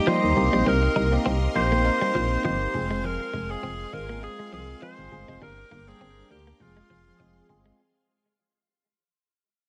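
A bright, punchy alto saxophone with light vibrato carries the melody up front, touched with delay, in this nostalgic yet urgent pop fragment in F dorian at 101 BPM with a gentle sixteenth-note swing. A bell-like tine electric piano with phaser, a shimmering vintage string machine with ensemble chorus, a clean direct-recorded guitar riff sitting in the background, and a round, solid FM bass move through Cm7, Fm and Gm chords. The band lands an accent at 5.4 seconds, dark, detuned synth brass stabs enter at 5.9 seconds, and the whole passage fades out within a light digital reverb.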